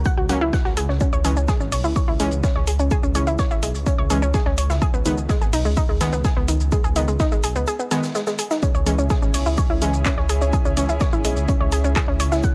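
A dark, detuned saw bass rumbles in from the very start of this hypnotic, dramatic melodic techno excerpt in C# minor, running at 126 BPM in a straight 4/4, its deep, saturated tone pumping against the sidechain. A heavy, layered electronic kick sits up front beside it, while a techno kit adds handclaps, hats and shaker, and an acoustic jazz kit, smooth and rolled-off in the background, contributes its own hi-hat, shaker and medium-tuned snare. Over this, a round, nasal analog pluck carries the arpeggios up front with chorus and tape echo, and a punchy, brassy synth stab decays in the background through chorus, cassette tape and echo until it drops out at 10.9 seconds. The chords move from C#m to G#m and back, and after a short break a lush, thick unison pad swells in at 8.6 seconds with slow-attack sustained chords. The whole mix has a gritty, dry hardware character with a cassette-tape tinge.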